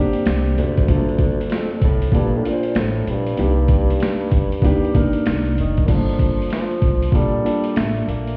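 Muffled as if heard through a wall, with stone-room reverb and vinyl crackle, this nocturnal, mellow jazz-hop excerpt in G minor at 96 BPM sets a warm, lightly vibrato-tinged solo bassoon melody with analog delay over a dark concert grand piano, a woody, growly pizzicato upright bass and an up-front, gritty boom bap drum kit with a thumpy kick and high-tuned snare, moving from C7sus2 through Gm9 and Cm9 before the opening section repeats at 5.9 seconds.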